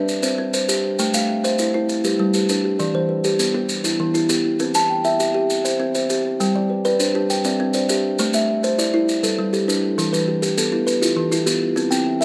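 This short excerpt has a dry, open-air sound, recorded outdoors with little reverb. It is a warm, rippling piece of southern African traditional music built on an mbira-style interlocking cycle in a straight 12/8 at 134 BPM, counted in dotted quarters. Up front, a bright, woody kalimba with a solid board rings out mid-forward arpeggios under a thumbnail pluck. Behind it, a second kalimba with a hollow box and a softer thumb pluck plays dark, smooth arpeggios carrying a slapback echo. Distant, grainy maracas keep a mellow pulse throughout, set in a large-room sound. The harmony cycles through C, Am, G and Em, and a second section begins at 6.4 seconds, starting on G before returning to the same chords until the cut at 12.2 seconds.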